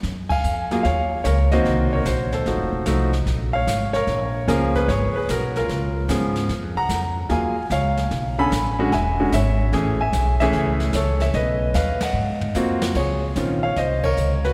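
Warm and sophisticated, this swinging jazz piano trio excerpt sets a clear, intimate grand piano with audible action noise up front beside a woody, thumpy pizzicato upright bass and a quieter brushed drum kit with dark cymbals and a boomy kick, heard in a long church reverb, with band accents punctuating the rich, extended chord changes and a drum fill at 12.2 seconds leading into a new section at 13.0 seconds.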